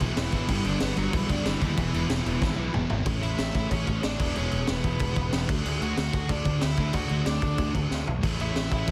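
A raw garage drum kit with a boomy, softly clipped kick and high-tuned snare sits up front from the start, joined by a growly fuzz-picked bass, a hollow-bodied semi-hollow guitar riff in the background, a very quiet sludgy guitar and a double-tracked overdriven guitar riff that stops at 3.1 seconds, while a dark, bluesy distorted lead guitar melody enters at 0.2 seconds in this energetic, rowdy punk rock excerpt at 186 BPM, moving through G, E, A and D with drum fills and a dense, dry, heavily limited master.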